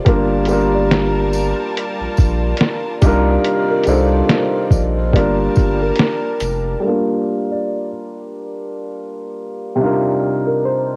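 A loping 71 BPM groove in 4/4, swung at 58% on the sixteenths, carries this melancholic, nostalgic lo-fi hip hop cut in G minor, taken from a longer piece. Up front, a compressed, pitched-down sampler-style drum kit with 12-bit grit lays down a thumpy kick, a medium-tuned snare, hi-hat and shaker, joined from 0.5 s by a jingly, bright tambourine. It sits over a deep, thick sine sub bass with tube saturation. A woody upright piano with long sustain plays the accompaniment through Gm9 and Cm11 chords, while a second upright piano, felt-muted, boxy and intimate, carries a soft melody in the background, both colored by cassette tape and a low-pass filter. A lush, bowed string section with vibrato holds sustained chords until 6.8 s, when the drums, bass and strings have dropped away and the two pianos continue alone under a filter sweep through Gm7 and Cm11 to the close at 11.0 s. The whole has the light small-room reverb of a home recording on cassette.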